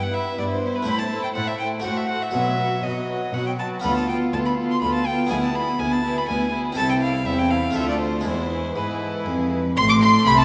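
A rich, reedy solo violin sits up front in this stormy, driving baroque-style concerto movement in 3/4 at 122 BPM, settling into A minor from 3.8 s, its gut-string line spanning B4 to D6 over two bowed violin sections, one of them very quiet. A dark, distant viola section, a bright Italian-style harpsichord and a nasal cello section with a smooth top fill out the accompaniment and bass. A double bass section joins only at 9.8 s as the chords land on Am, all set in a wet recital hall with a 1.7 s reverb, in this short passage cut from a longer piece.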